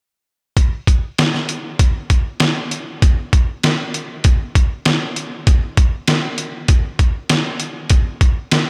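A pitched-down, gritty, compressed trip hop sampler-style drum kit sits up front from 0.6 to 8.7 seconds, its hi-hat, thumpy kick and medium-tuned snare driving a straight 4/4 rock groove at 98 BPM with a restless, cathartic mood in light reverb, in this short cut from a longer piece.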